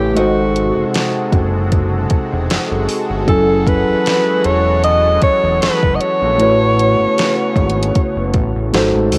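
Contemporary R&B with a late-night, moody feel, this short excerpt moves at 77 BPM in 4/4 with a light swing on the sixteenths. An up-front alto saxophone carries the melody with vibrato, a punchy attack and a smooth top, colored by cassette tape and analog delay, while a mellow, clean tine electric piano supplies the accompaniment. Beneath them, a lush unison pad holds sustained chords with a slow attack, its detuned sawtooth and square tones treated with chorus and phaser, and a fat, detuned analog bass adds a thick low end with a filter sweep. A produced electronic drum kit enters at 0.2 seconds with a soft kick, deep snare and warm hats, and a very quiet, glassy wavetable pluck adds crystalline, decaying accents from 0.2 seconds and again at 7.2 seconds. The harmony moves through G#7b9, F#m9 and A69 in a home cassette recording with light reverb.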